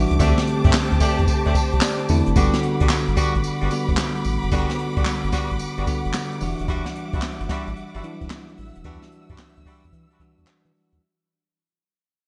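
A bell-like tine electric piano, lush bowed symphonic strings with dark vibrato and a round, deep analog bass open this upbeat, bouncy R&B new jack swing excerpt together, joined moments later by an up-front brushed drum kit (boomy kick, high-tuned snare, handclaps, hi-hat and tambourine, roughened by gritty 12-bit sampler texture and gated reverb) and distant, roomy jazz-style horn stabs, before an electric piano fill from 1.5 to 2.4 seconds leads into a fade-out within the bright 1980s-style digital production.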